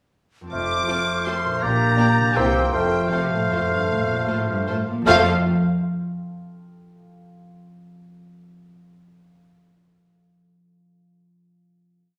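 A concert harp opens this brief orchestral ballroom waltz in F major, rolling ringing arpeggios at 0.4 seconds before a lush bowed violin section takes the sweeping, elegant melody with soft-attack vibrato, over a rich cello bass on the beats and a distant double bass doubling it. Moving at 159 BPM in 3/4 with rubato and uneven beats, it gathers a pure, hollow flute and a roomy oboe and bassoon in the rhythm of the tune, while second violins, violas and a mellow French horn section join at 0.9 seconds with after-beat chords, a background counter-melody and sustained harmony. A single phrase settles onto a final chord at 5.1 seconds, all bathed in the wet reverb of a recital hall.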